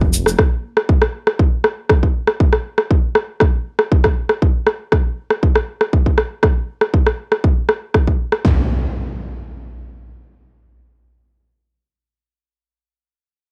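A straight 4/4 afro house groove at 119 BPM opens with a punchy, layered electronic kick drum, tape-warm and up front, joined at 0.3 s by an electronic rim click, both carrying a cassette tape coloring. Around 8.4 s the drums fall away and an electronic impact sound effect takes over until 11.6 s. The light reverb and homespun cassette sound give this excerpt from a longer piece a spiritual, earthy mood.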